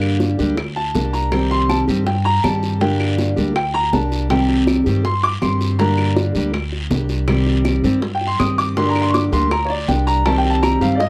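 A boxy baby grand piano takes the solo with high arpeggios from 0.8 s in this danceable Cuban son and guajira fragment, set over a dark fingerpicked steel-string acoustic guitar with audible finger squeak, a growly, woody pizzicato upright bass, round low-tuned bongos played with soft hands, background claves and a raspy, saturated guiro, all circling between G minor and C minor in a dry, close, small-room 1970s-style studio sound.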